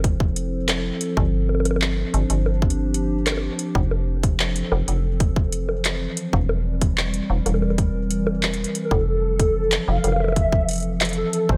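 IDM at 93 BPM in F major, wistful and playful, this excerpt cut from a longer piece sets a dark, detuned, tape-warbling pad holding sustained chords from Fmaj7 through G7sus4 and C7/E over a metallic, fast-attack, decaying FM bass, a tight, up-front electronic kick, and a booming analog drum machine of bongos, handclaps and metallic hi-hats run through tape echo, until a nostalgic, wave-folded lead with vibrato, chorus, cassette grit and digital delay enters at 8.8 seconds, all set in light digital ambience.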